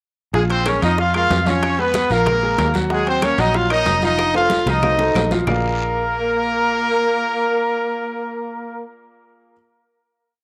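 A brilliant, up-front horn section with vibrato and tape echo states hook phrases in octaves over a bright piano montuno, a round fingered electric bass tumbao that anticipates the chords, and a quiet percussion bed of tight bongos in steady eighths, conga slaps and open strokes, ringing timbales on shell and bell, a woody clave time line and a raspy guiro, driving this passionate 187 BPM salsa piece through a drum fill from 4.2 seconds until the percussion stops at 5.5 seconds, leaving a final Bb7 chord, with the horns sounding until 8.8 seconds.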